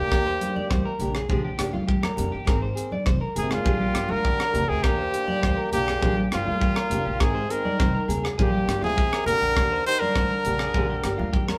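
A clear, close-miked trumpet opens this carefree, joyful highlife excerpt at 102 BPM in a straight 4/4, singing a jazz-style melody with light vibrato over a bright trombone second line that sits further back. From the very start, a slightly broken-up, compressed electric guitar picks arpeggios in the background while a woody, thumpy upright bass with gut strings plays pizzicato underneath. A fingerpicked nylon-string guitar joins at 0.1 seconds with dark, full-bodied accompaniment and the occasional finger squeak, alongside a tight, up-front funk drum kit of hi-hat, kick drum and rim click. Ringing, medium-tuned congas played with soft hands arrive at 0.4 seconds, sounding distant as if in a larger space. The chords cycle through Ebmaj7, Bb6 and Abadd9 in Bb mixolydian, the band plays live together in a stone room with moderate reverb, and a drum fill at 11.3 seconds closes this section of a longer piece.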